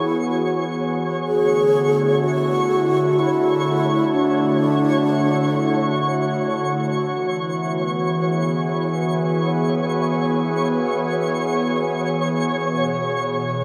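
In free time, this peaceful, serene ambient fragment from a longer piece sits in E mixolydian, tuned to A4 = 437 Hz, and moves through E, Dmaj7, E and B5 under a huge, wet reverb. A mellow, wooden-headed alto flute with vibrato and an unsteady, breathy tone carries the melody through tape echo until 6.5 s. An airy, detuned pad with chorus sits up front holding sustained chords throughout, while a quieter granular texture adds twinkling, sparkling octave-up shimmer in its own reverb.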